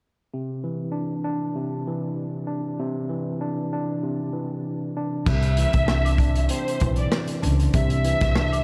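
Swung boom-bap hip-hop at 97 BPM in 4/4 opens at 0.3 s on a worn, slightly out-of-tune tine electric piano holding a Cadd9 chord through built-in speakers, mellow and up front. At 5.3 s a crunchy, saturated breakbeat kit with dark cymbals and a tight kick enters alongside a woody pizzicato upright bass, a very quiet vintage egg shaker and woodblock, and a distant, lush bowed violin section carrying the melody with expressive vibrato and analog delay. The confident, dreamy mix is soaked in huge ambient reverb, and this cut from a longer piece ends at 8.6 s.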